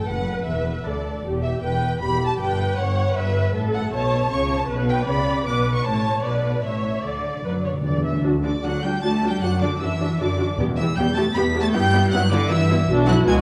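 In a brisk 3/4 at 155 BPM, this graceful, lively classical-period symphony movement in D major is cut from a longer piece and tuned to A4 = 436 Hz. One violin section carries the lush, distant melody while a second, smooth and even violin section plays a close second line. Up-front violas add expressive portamento in the accompaniment, focused cellos and rich double basses hold the bass, and hard-mallet timpani break in with an articulate fill at 7.0 s, all set in a dark, warm production with moderate concert hall reverb.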